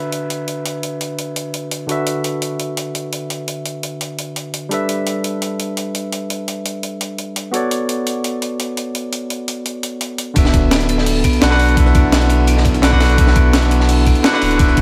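Liquid drum and bass at 170 BPM in D major, this dreamy, lush excerpt opens with a bright, barky tine electric piano carrying delay-touched chords over a gritty, compressed sampler-style breakbeat of hi-hat and high-tuned snare. At the drop at 10.4 seconds, a round, up-front sine sub bass arrives together with a thumpy electronic kick, a dark, saturated breakbeat kit with a rolled-off top and filtered cymbals, and a metallic, ringing hard-mallet vibraphone playing arpeggios through dub echo and 12-bit sampler grit. Chords move from D69 through G69 and Bm7 back to D69, all set in a light small-room ambience.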